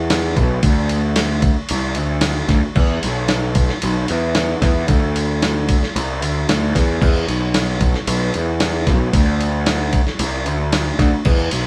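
Captured as a band playing live in one room with moderate studio reverb, this brooding, gritty classic rock excerpt at 113 BPM sets an up-front picked electric bass, fuzzy, overdriven and growly, low between B1 and E2, against a compressed sampler-style drum kit whose thumpy kick, fat snare, ride and crash carry a tape-warm, large-room character across its 11.7 seconds.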